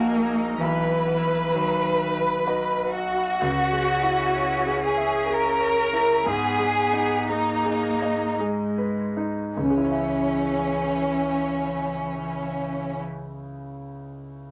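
A melancholic, fragile neoclassical passage in three, cut from a longer piece, opens with a rich, expressive chamber violin section carrying the vibrato-laden melody up front, a distant solo cello singing a bowed second line with portamento, and a brilliant concert grand piano whose deep bass and long sustain ring beneath them. A very quiet, woody marimba adds dry, rustic arpeggios until 3.3 seconds, while the rubato pulse slows through the middle of the passage. The strings stop at 13.0 seconds, leaving the open piano briefly alone in a short club reverb.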